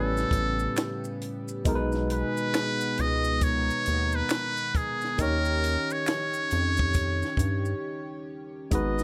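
A slow 68 BPM groove in 4/4 with a lazy 16th-note swing sets up this sultry, introspective slice of neo-soul R&B, cut from a longer piece. A muted trumpet carries the melody up front, its metal mute giving a buzzy, thin, breathy tone with light vibrato and a smooth top in a jazz style. Beneath it, a barky tine electric piano played through a combo amp supplies clean accompaniment, while a chorused pulse-width pad sits in the background with shimmering, retro sustained chords. A rubbery, hollow square-wave bass bounces along with a filter pluck and fast attack, and from 0.2 seconds a compact cocktail drum kit joins with a high-tuned snare, punchy kick, hi-hat and finger snaps, alongside close maracas and group handclaps tucked behind. The harmony moves from A9 to B6 to D#7, a brief break arrives at 7.8 seconds, and light reverb lends the whole a soft sense of space.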